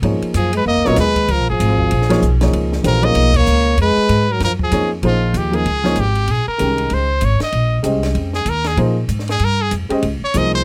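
Close, detailed and nearly dry, this hypnotic, intense modal jazz piece swings at 192 BPM in G# dorian before moving to Bb dorian at 5.0 s: a dark baby grand piano with audible action noise and a woody, thumpy upright bass anchor it, a compact cocktail drum kit with dark cymbals, a high-tuned snare and a punchy kick sits low in the mix, and a brilliant, forceful trumpet with scooped notes carries the melody over a mellow, breathy trombone second line until 4.9 s, with a band accent at 3.3 s before the trumpet takes a solo.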